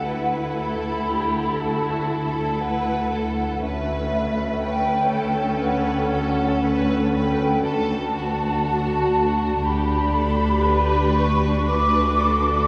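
A large flute ensemble floats above this cinematic, emotional film-score excerpt, its airy, tongued tone carrying vibrato and lifted highs in a second line that ranges from E5 to D6. Beneath it, a clear, intense violin section adds a second line of its own, lush and bowed with vibrato, sitting at a distance. A rich viola section supplies smooth, even accompaniment, while cellos and double basses together anchor the bass on a low D, the basses with only a light vibrato. The tempo is a slow, rubato 60 BPM in 4/4 and D major, with an uplifting, tender mood as the harmony moves from F#m7/D to Aadd9/D at 3.6 seconds, then settles through D, G/D and back to D over a constant D in the bass. A wet cathedral reverb places the orchestra further back in the room, and every part sounds together from start to finish across the 12.7 seconds.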